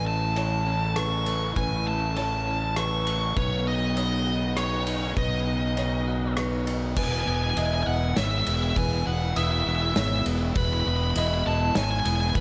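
Post-rock in E major at 100 BPM in 3/4, soaring and euphoric, where a nasal, overdriven lead guitar with a parked wah carries the melody up front over a fuzz fingered electric bass, while a compressed, scooped clean electric guitar with subtle chorus and a soft, felt-muted upright piano weave arpeggios in the background, a rich, distant symphonic string section sustains very quiet bowed chords, and a loose indie drum kit with a tight kick and pumping small-room character enters at 0.4 seconds, the harmony moving from A to Badd9 at 3.4 seconds and settling on E at 7.0 seconds, with slapback and tape echo on the guitars and piano and a lush hall reverb giving the whole fragment a big arena sound.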